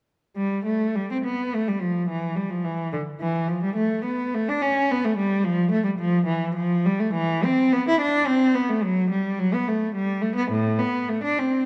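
A single bowed cello sounds at 0.4 seconds and carries the whole passage alone until 11.7 seconds, in the manner of a baroque-style suite movement for unaccompanied cello. The mood is flowing and radiant, moving in a 6/8 whose beats stretch and give with a free, rubato feel. The cello ranges from A2 up to E4, its tone warm and focused, with a smooth top and vibrato. Placed up front, the solo player is surrounded by a lush recital hall reverb that lingers for 1.4 seconds. This brief classical passage is cut from a longer piece.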